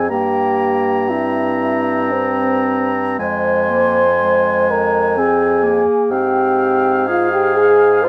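A dark, warm production with light reverb frames this short excerpt from a slow romantic movement for wind quintet, set in F minor in 3/4 at around 54-64 BPM with a rubato feel. The mood is solemn and elegiac, and the harmony moves from C7 over G to F minor and then to F minor over Ab. A pure, hollow concert flute carries the melody between C5 and C6 with vibrato, a soft attack and lifted highs, while a close-miked oboe with light vibrato adds a second line. Beneath them, a clear clarinet with a soft attack and a distant, roomy sound joins a mellow French horn in the accompaniment, the horn sitting as the most prominent voice in the blend. A clear bassoon with light vibrato anchors the bass between F2 and Ab2, and the five instruments play together for the full 8.1 seconds.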